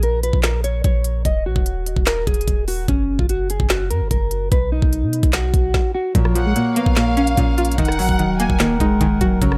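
A dry, gritty hardware recording with transformer saturation and a touch of digital ambience frames this hard-hitting, dark trap excerpt in Bb phrygian, running at 147 BPM in 4/4 with a half-time feel. Up front, an electronic trap kit with a knocking kick, woody snare, crisp hi-hats, handclaps and rim clicks drives alongside a deep, boomy 808-style bass with a sine core and a noise layer. A mellow, clean, fingered electric guitar, also up front, carries the melody with subtle chorus and analog delay over Bbm, Ebm, Gb and B chords. The music breaks off briefly at 5.7 seconds. At 6.1 seconds a new section begins, where a twangy, bright resonator pluck with chorus and a filter sweep adds accompaniment, and a moment later a reedy, breathing, close-miked harmonium enters to hold sustained chords. From 6.4 seconds, a lush, distant studio violin section with vibrato and analog delay plays a high second line.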